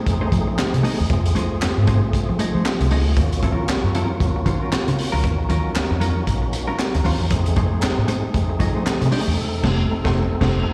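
Funk at 116 BPM with a swung sixteenth feel, cool and driving, where a crunchy, gritty breakbeat kit with a high-tuned snare and tight kick sits up front over a round, foam-muted vintage bass, a clean, compressed mellow guitar with slapback echo, sustained chords from a fat, lightly overdriven tonewheel organ with key click and fast rotary speaker moving between F7#9 and Ebm9, and a very quiet, crisp group handclap from 0.6 to 9.0 s, before a band accent at 9.4 s closes this excerpt cut from a longer piece.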